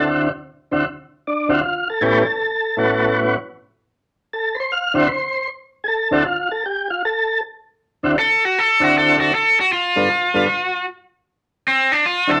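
A swung eighth-note feel drives this rollicking, swaggering blues in 4/4 at 156 BPM, tuned slightly sharp to A4 = 445 Hz. A tonewheel organ carries the accompaniment from the start, its smooth, clean tone turning through a slow rotary speaker and sitting up front across a range from D2 to F5. The harmony moves through ninth chords, from D9 to A9 and back to D9, later stepping to G9 before returning to D9. At 8.2 s a cranked stack guitar enters with a bright, overdriven, picked solo that shares the foreground with the organ, its melody staying between C4 and A4. The guitar is set a touch louder than the organ, and a light reverb surrounds the pair in this short excerpt cut from a longer piece.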